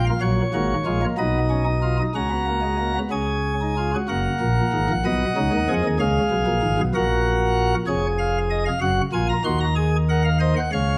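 Classical baroque-style four-part fugue in F# major, elegant and stately at 63 BPM in a straight 6/8, played on solo pipe organ whose sparkling, light, bright flute stops carry a chiff and sit up front in a reverberant recital hall with a 1.3-second decay, in a short cut from a longer piece that moves from a brief opening section into a second one at 4.1 seconds.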